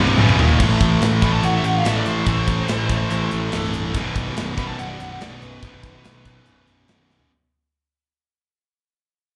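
Dark and epic, this heavy metal fragment sounds like a live gig heard through a club PA: it opens on a drum fill and a very quiet, double-tracked, compressed distorted guitar that drops out at 0.6 s, while an up-front high-gain rhythm guitar and a tight background guitar with slapback echo drive the riff over a growly, punchy fuzz bass and a polished, airy kit with bright cymbals, a medium-tuned snare and a tight kick, until a warm high-gain lead guitar with slapback echo takes a solo from 1.2 s as the whole passage fades out.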